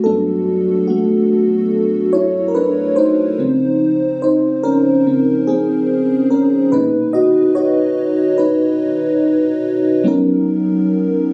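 A relaxed swing on the sixteenths sets a slow 72 BPM groove in 4/4 for this short R&B fragment, cut from a longer piece and sitting in B major with a warm, easygoing mood. The only voice is an FM electric piano layered with a soft pad, spanning G2 to D#5 and taking a solo from the start until 10.0 seconds. Its tone is lush and dreamy yet dark, with a fast attack that decays, a noise layer and a detuned shimmer from chorus, and it sits up front in the sound. The harmony moves from Gmaj9 to C#maj9 at 3.4 seconds and settles on Bmaj9 at 6.7 seconds. Captured on a phone in the room, the recording carries light club reverb, digital ambience and compression.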